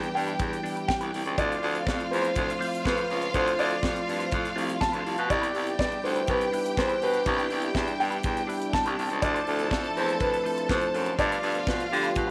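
A tight funk drum kit drives a straight disco groove, its high-tuned snare, tight kick and hi-hat sounding natural, as in a small room. The mood is joyful and glamorous. A concert grand piano carries the melody with deep bass, a boxy character and long sustain, while a lush, bowed studio string section with vibrato and a smooth top traces a second line. Up front, a vintage-sounding baritone saxophone takes the bass part with clear vibrato. A clean tine electric piano played through a combo amp with a phaser, and a very quiet, compressed, direct-recorded electric guitar fill in the accompaniment. At 5.3 seconds a warm French horn section joins with very quiet sustained chords in a classical style, over harmony that moves between Cmaj9 and Dm7 before reaching G7 near the end of this short cut from a longer piece, all set in a moderate spring reverb.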